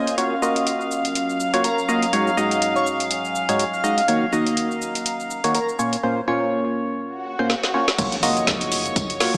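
A swung garage drum kit with a woody snare, metallic hats and overdrive drives this energetic, soulful piano house excerpt, with a hollow, percussive organ stab riff up front, pumping chords from a dark, reedy violin section, and a warbling, nostalgic tape-like pad that ends at 6.0 seconds. A soft, dreamy lead with vibrato and portamento floats in the background between 1.6 and 5.7 seconds, and an electronic swell and drum fill build toward the drop at 8.0 seconds. At the drop, an impact lands alongside a punchy overdriven kick, a faint organ-like FM bass and a very quiet, muffled vintage kit with tambourine, all bathed in a wet plate reverb with a small-speaker sound.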